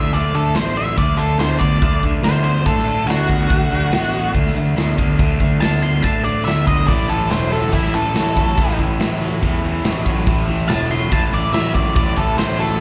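A straight 4/4 pulse at 142 BPM drives this swaggering, brooding classic rock excerpt in A dorian, cut from a longer piece and heard as a live gig through the venue's PA with small club reverb. A big rock drum kit sits up front, its punchy kick, medium-tuned snare, hi-hat and tambourine ringing in a big room. A growling picked electric bass, overdriven and bright, anchors the low end beside a raw garage guitar whose picked, overdriven riff carries a slapback echo. Over them an octave-fuzz lead guitar takes a solo for the full 12.8 seconds, its dark, distorted tone up front and carrying a slapback echo as it ranges from E4 to C6. At 6.9 seconds an overdriven semi-hollow guitar joins in the background with a hollow-body riff of its own, as the harmony moves from D5 to A5.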